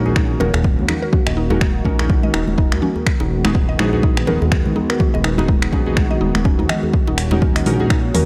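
Spiritual and driving, this short excerpt of afro house moves at 124 BPM in 4/4 with a 16th-note swing, set in Eb minor as the harmony shifts from Ebm7 to Abm7/Eb at 3.1 seconds and back to Ebm7 at 6.9 seconds. A detuned sawtooth pad holds mellow sustained chords with a slow attack and chorus, while square-wave analog keys fire decaying, wave-folded stabs through a low-pass filter sweep and tape echo, set back in the mix. Underneath, a smooth synth bass with vibrato and saturation holds a sustained low end, and all three of these synth parts breathe with sidechain pumping. A woody, round FM pluck traces arpeggios with a noise layer, chorus and tape echo, sitting in the background. The punchy, overdriven electronic kick drives up front, joined by a deep house kit of finger snaps, metallic hi-hats and toms, while congas with a thin, bright skin and a cracking, close djembe played with hard hands fill out the rhythm from behind. 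The overall sound is dry and gritty, with transformer saturation giving the hardware recording its bite.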